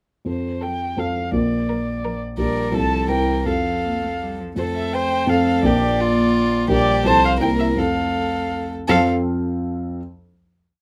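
A mellow concert grand with deep bass and short sustain opens at 0.2 s with up-front block chords, and a woody, sul tasto violin enters at once with the vibrato melody of this lively, cheerful classical-period movement for piano quartet in F major at a quick 168 BPM in 3/4; a second violin with soft attack and airy bow adds pizzicato, a counter-melody and sustained chords, while a warm, intimate cello sits in the background answering at phrase ends, all in light reverb across two matching sections that close on a final chord at 8.9 s.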